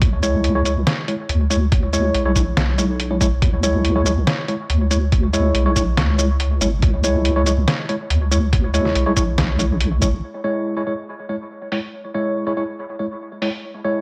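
A light reverb gives this short cut from a longer deep dubstep piece a cavernous, brooding air, with a half-time feel that keeps it heavy and patient over a C# minor chord. Up front, a deep, soft wobble bass with a dark, detuned sine-and-triangle tone and a chorus effect sustains through the opening, stopping at 10.2 seconds. Beneath it, a compressed, pitched-down electronic kick drum thumps with a muffled weight, while a sampler-style trip hop kit adds a medium-tuned snare, hi-hat and shaker, all softened by low-pass filtering. A clean tine electric piano, heard as if through built-in speakers, plays stabs treated with phaser and dub echo from 0.2 seconds onward. When the bass and kick drop out, the piano and filtered kit carry a brief closing section, with the kit ending at 13.5 seconds and the piano continuing to the close.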